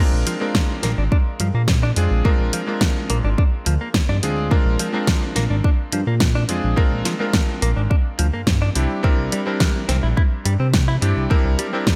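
Nu-disco with a sunny, feel-good glow, where a punchy, layered electronic kick and a pop kit's hi-hat and fat, gated snare sit up front over a glossy, retro pulse-wave synth bass, while a bright, cutting electric grand piano with chorus, delay and sidechain pumping and a clean, direct-recorded picked guitar riff with subtle chorus and delay ride a Bb7 groove that shifts to C7 at 8.8 seconds, all in a light digital ambience with a 1980s-style sheen.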